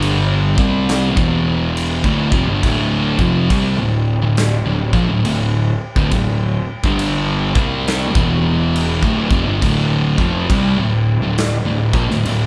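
A thick, dark fuzz guitar sits up front, grinding out a distorted, picked riff in D dorian, while a second fuzz guitar adds to the heavy texture further back in the mix. This is ominous, hypnotic stoner and doom metal at a slow 69 BPM in 4/4, with a swung eighth-note feel that gives the riff a loping sway. Beneath the guitars, an overdriven picked electric bass adds a tube-saturated growl from the background, and a big acoustic rock kit is pushed forward, with a punchy kick, a medium-tuned snare and bright crash cymbals ringing in an airy space. The harmony opens unaccompanied by chords before moving from E5 to D minor, a shift that returns at 8.1 seconds. Recorded as a band playing live in one large room with a moderate studio reverb, this short section, cut from a longer piece, runs for 12.5 seconds.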